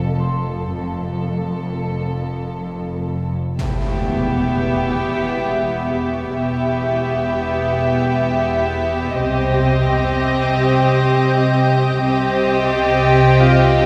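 Eerie and uneasy, this suspense film score excerpt in 5/4 opens with a dark, floating violin melody over sul tasto cellos and rich double basses, a ringing thumb-plucked harp in the background, then at 3.6 seconds adds an intimate, up-front chamber violin line, soft-attacked violas and a distant electronic impact, before high, gently vibrato violins join at 9.2 seconds, all bathed in a cavernous cathedral reverb.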